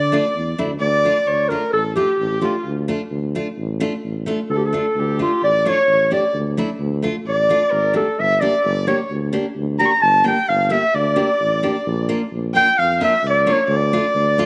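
A soulful, festive klezmer piece in D harmonic minor at 130 BPM opens with a breathy, up-front clarinet, a mellow tuba bass, a nasal, boxy bowed violin on a smooth second line, and a bright, full-bodied fingerpicked nylon-string guitar with audible finger squeak. From 0.8 seconds the clarinet takes a jazz-style solo with light vibrato and subtone, while the tuba adds soft-attack scooped notes in a vintage band style. The chords move from Dm to Gm, then Bb and back to Dm, all tuned to A4 = 436 Hz and set in an echo chamber with small-room ambience.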